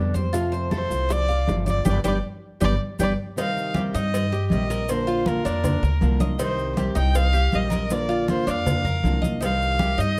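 A nylon-string guitar, a metallic, double-strung Cuban tres picking arpeggios, and a woody, thumpy pizzicato upright bass open this sultry excerpt of Cuban son and guajira in C minor at 159 BPM, joined at once by background congas, tight, high-tuned bongos and cowbell, and grainy maracas. A nasal, boxy bowed violin with vibrato carries the melody up front from 0.7 seconds over the full-bodied fingerpicked guitar, and the band hits an accent from 1.9 to 3.4 seconds before the harmony moves between C minor and B-flat. Light reverb and close, detailed microphones give the sound a warm clarity.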